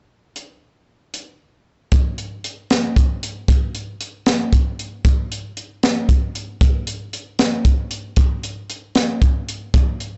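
Restless and wistful, this short rock excerpt cut from a longer piece moves at 77 BPM in a straight 6/8, carried entirely by a crisp fusion drum kit of hi-hat, kick and high-tuned snare. The acoustic kit sits up front in an airy studio room, its tight kick and polished tone pushed through a blown-out, overdriven recording with little reverb and a top end that stops at 8.0 kHz. A brief opening passage gives way at 1.9 seconds to a longer second section that runs to the close near 10.1 seconds.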